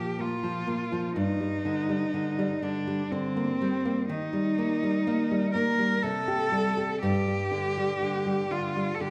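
Yearning and elegiac, this brief passage cut from a longer romantic duo moves at a rubato 61 BPM in 3/4, settling into G minor at 4.1 s with tuning at A4 = 441 Hz. A single bowed cello carries the melody up front, its tone rich and focused with vibrato and a close presence, while a fingerpicked nylon-string guitar plays classical accompaniment with a warm, woody timbre and old strings. The duo sits in a reverberant church or concert hall ambience, with chords moving from Gm to Eb.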